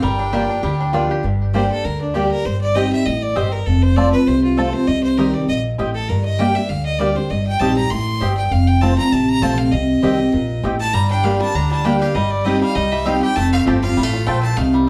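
A lonesome, rustic bluegrass excerpt in G minor at a swung 198 BPM opens with a clear, biting fiddle over an up-front, bright dreadnought guitar, thumpy pizzicato upright bass, a nasal slide lap resonator guitar that drops out at 1.2 seconds, and a twangy banjo with tape echo that returns at 10.9 seconds, joined at 0.3 seconds by round mandolin stabs, while the fiddle takes a solo from 1.2 seconds inside a wet studio reverb heard from further back in the room.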